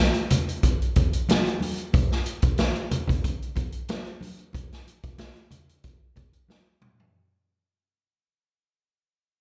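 Funk at 92 BPM in a cool, driving groove, where a roomy big-band drum kit with a boomy kick, a medium-tuned snare, hi-hat, toms and a rolled-off top sits up front but distant, bright thin-skinned congas with slapback echo ride in the background, a lush hall reverb and club ambience give the feel of a live gig heard through the venue's PA, and the short excerpt fades out throughout, with a drum fill arriving at 6.5 seconds.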